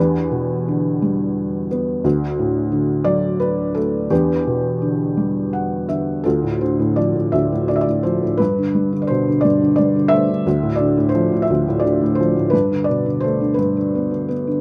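A felt-muted upright piano plays alone from the start, its tone intimate, dark and mellow and set up front by close, detailed microphones with light reverb, in a melancholic, reflective classical piece at 57 BPM in a rubato 6/8 that moves over Em7 and D chords in E minor, then shifts to G mixolydian at 6.3 s, just after a brief piano fill at 5.2 s, with Dm and Gadd9 harmonies.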